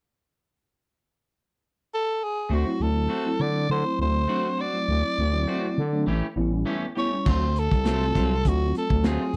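A straight-eighth soul blues groove in 4/4 at 101 BPM in D mixolydian, this soulful, rollicking cut opens with a raspy, bright tenor saxophone carrying the jazz-style solo melody up front from 1.9 seconds. At 2.5 seconds a thick, sustained FM bass and twangy clean guitar stabs with vibrato and slapback echo join over D7 and then A7, with a chorused tine electric piano through a combo amp following at 2.7 seconds. At 7.3 seconds a crunchy, saturated breakbeat kit with dark cymbals and a tight kick arrives on a D7#9, all in a dry, close 1970s-style studio sound with light reverb.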